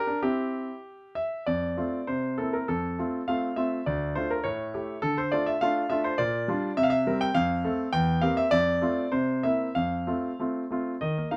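In a 2/4 with a flexible, rubato feel between 94 and 105 BPM, this cheerful, graceful classical-period sonatina unfolds in F major, tuned to A4 = 439 Hz. A concert grand piano plays alone throughout, covering a range from D2 up to G5 with a brilliant, polished tone, a deep bass and a short sustain that keeps each note crisp. The piano sits up front and present, framed by light reverb within a dark, warm production. A brief opening phrase on C gives way at 1.5 seconds to a longer passage that moves through F, C7, a turn to D minor with its A7, and Gm7/Bb before returning home to F. Cut from a longer piece, the recording ends at about 11.4 seconds.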